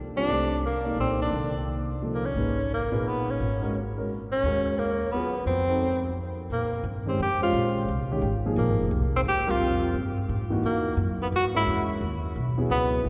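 Cool and intense, this short modal jazz piece cut from a longer piece swings in 3/4 as a clear, vibrato-laden tenor saxophone solos up front over a woody pizzicato upright bass and a dark, mellow grand piano with audible action noise and long sustain, all bathed in a wet cathedral reverb, with a brief stop at 6.2 seconds before the second section begins at 6.5 seconds.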